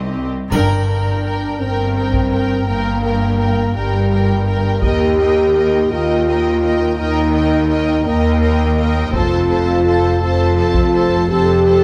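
Epic and heroic, this cinematic orchestral film-score excerpt moves at a slow 56 BPM in 6/8 and G minor, with a clear, intense violin section carrying the melody over a smooth second violin line, lush violas, mellow, distant French horns holding sustained chords, and rich cellos and expressive double basses anchoring the bass, while heavy-stick taiko drums sound from 0.5 s to 11.1 s, a triangle sits in the background until 1.9 s, and an opening band accent rings in a moderate scoring-stage reverb as the chords move from Gm through Eb to F.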